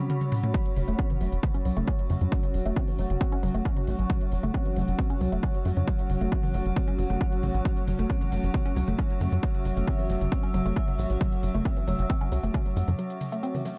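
A metallic, eerie drone, a cloudy granular pad and a woody, wave-folded pluck riff open this intense, industrial excerpt of driving peak-time techno at 135 BPM, with a techno kit of smooth hats, shaker and toms entering in a brief fill before an overdriven, up-front kick lands at 0.5 seconds and a tight, punchy sawtooth sequencer bass follows at 0.8 seconds, everything but the kick sidechain-pumped in an echo-heavy mix with little reverb.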